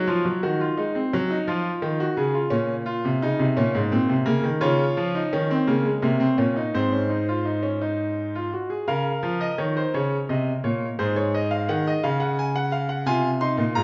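Classical baroque-style three-part fugue for solo grand piano in D-flat major, driving yet contemplative at 57 BPM in a straight 6/8, its brilliant, up-front tone with deep bass and long sustain ringing through a reverberant recital hall as the harmony moves from Cdim/Eb through Fm7 and Bbm toward Ab, then shifts at 8.9 seconds into a passage that cadences through Ab7 to Db before this short cut from a longer piece closes on Ab/C.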